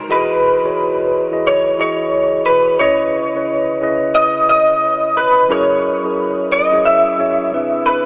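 Late-night and introspective, this short cut from a longer R&B piece sways at 89 BPM with a swung sixteenth feel, as a mellow, clean tine electric piano sits up front beneath a slightly broken-up, compressed electric guitar melody colored by ensemble chorus and analog delay, the whole dreamy mix soaked in a huge ambient reverb with a telephone-like sound while the chords move from Emaj7 through C#m9 and F#9 to Cmaj9.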